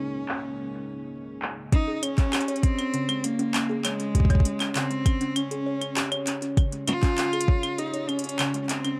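A dark, lightly reverberant production frames this glitchy, intricate IDM passage cut from a longer piece, where an up-front bowed cello sings a smooth, vibrato-rich melody through tape echo while a detuned sawtooth pad with chorus holds smooth sustained chords at the start. From 0.3 seconds a booming, overdriven analog drum machine adds claves, handclaps and metallic, filtered hi-hats. At 1.7 seconds the pad gives way to woody, mellow kalimba arpeggios ringing through digital delay and a deep electronic kick that drives until 7.6 seconds.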